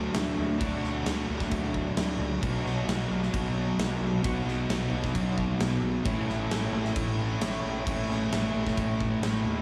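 A big arena sound with a lush hall reverb frames this confident, sunny classic rock excerpt at 132 BPM in a straight 4/4. A sludgy, double-tracked distorted guitar plays the picked, overdriven riff up front with slapback echo, over a fuzzy, punchy fingered electric bass and a big acoustic rock kit with a punchy kick, medium-tuned snare and bright crash cymbals. The chords move from D to B at 2.4 seconds and settle on A at 6.0 seconds.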